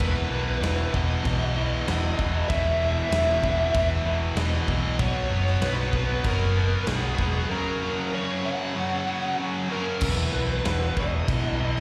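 An anthemic, energetic hard rock passage in 4/4 at 96 BPM opens with everything at once: a smooth, dark overdriven lead guitar carrying the melody high above a pair of tight, bright, double-tracked distorted guitars playing the riff. Underneath, a round, up-front hollow-body short-scale electric bass is the loudest part, picked and punchy in its low register, while a big acoustic rock kit with a punchy kick, medium-tuned snare and crash cymbal drives the straight feel from a stone-room setting. The chords move from E5 to B5 and then to F# during a break from 7.5 to 10.0 seconds, returning to E5 as the main section restarts. One of the rhythm guitars drops out at 10.0 seconds, leaving the other to carry the riff with the lead, bass and drums to the end. Slapback echo colours the guitars, and the whole performance has the feel of a live gig heard through the venue's PA in a lightly reverberant recital hall, cut from a longer piece.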